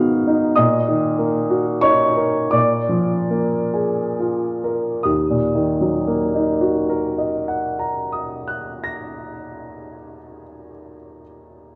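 Melancholic and wistful, this brief excerpt of a romantic classical nocturne in Eb minor unfolds in a slow, rubato 6/8 at 21-34 BPM, with a solo upright piano, woody, polished and up front, ranging from Eb2 to Bb6, slowing down through its opening 5.0 seconds over Abm7, Ebm/Bb and Bb7 before settling on Ebm, all heard through a wet recital hall reverb and the warbly pitch drift of worn old cassette tape.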